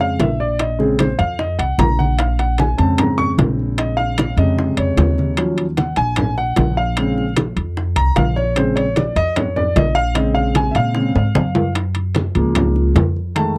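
Sophisticated and driving, this dry, close 1970s-style Afro-Cuban jazz excerpt in Bb minor at 151 BPM features an intimate, up-front concert grand piano soloing throughout with audible action noise and deep bass over Bbm7, Ebm7 and Gbmaj7 chords. It is anchored by a woody, thumpy pizzicato upright bass, with bright congas and round, low-tuned bongos in the background, ringing metal-shell timbales that enter at 0.2 seconds, and a drum fill from 11.2 to 11.8 seconds.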